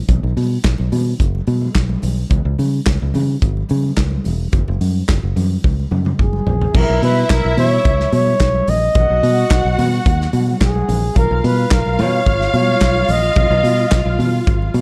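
A punchy, foam-muted fingered bass and a tight soul drum kit with handclaps open this joyful, danceable disco groove at 108 BPM, while ringing congas sit distant in the background and a drum fill near 5.6 seconds leads into a C#m13 passage. At 6.2 seconds a breathy, whispered flugelhorn takes the melody up front with scooped notes and a soft attack, joined at 6.7 seconds by a lush, woody string section bowing sul tasto with vibrato. The small room reverb gives the whole piece a dark, warm production.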